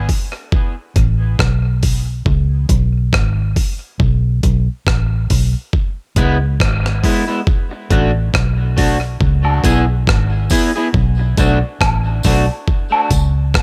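A dark, round, foam-muted electric bass sits up front from the very start of this deep, hypnotic dub reggae excerpt, moving in a low register at a slow 69 BPM in 4/4 with a swung sixteenth-note feel in C# phrygian. A breakbeat sampler-style drum kit joins almost at once, its compressed, pitched-up sound gritty and tape-toned, with a thumpy kick, hi-hat and rim click pushed close. Around 6.2 seconds a twangy electric guitar at the edge of break-up enters as accompaniment, colored by subtle chorus and tape echo, and drops out at 12.4 seconds. From 9.4 seconds woodblock and tambourine, along with egg shaker and group handclap, arrive sounding acoustic and distant in a large room, trailed by their own tape echo. The harmony drifts between Asus2, C#5, C#m7 and Bm7 under a digital ambience, and the opening stretch plays as a break before the fuller texture settles in.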